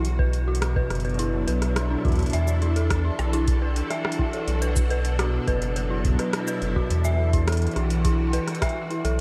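A rubbery, nasal square bass sits up front in this melancholic, eerie IDM excerpt in E minor at 105 BPM, as silky string-machine chords with 12-bit grit move between Bm7 and Em11, a dark, inharmonic FM bell arpeggio warbles under a filter sweep and diffuse delay from 0.2 seconds, and a deep electronic kick joins a tape-warm analog drum machine of metallic hi-hats, rim clicks and shaker, all soaked in dreamy cathedral reverb.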